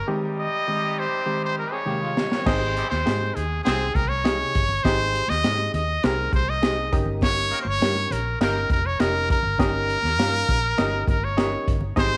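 A straight 4/4 groove underpins this uplifting, uptempo 1960s-style soul excerpt, where a brilliant, up-front trumpet sings the melody with vibrato over a reedy, slightly out-of-tune electric piano and a tight horn section in octave doubling, a lo-fi electric guitar through a small old amp adds a brief tremolo riff in the background, and at 2.2 seconds a crunchy breakbeat kit with a high-tuned snare enters, soon joined by a round, foam-muted electric bass and very quiet, damped congas, all in a moderate echo chamber reverb.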